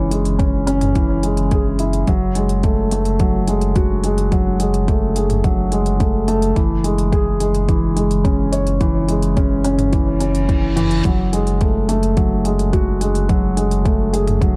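A felt-muted upright piano, soft and intimate with a thick, vintage tone and digital delay, opens on a riff over a round sine sub bass that pumps under the sidechain, soon joined by a deep house kit with smooth hi-hats and toms and a deep electronic kick, giving this melancholic, hypnotic piano and strings electronica in F# minor at 107 BPM a dry, close sound that moves between C#m/F# and F#madd9, with a reverse cymbal entering at 10.2 seconds.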